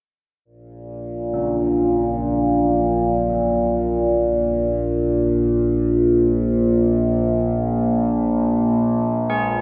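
An up-front drone of moving overtones, sawtooth and sine tones edged with ring modulation, chorus and its own reverb, swells in slowly from 0.9 seconds as very quiet bronze carillon bells with a minor-third overtone and worn iron clapper ring out arpeggios from 1.3 seconds, all steeped in a wet spring reverb and heavy echo in this ominous, desolate dark ambient fragment cut from a longer piece.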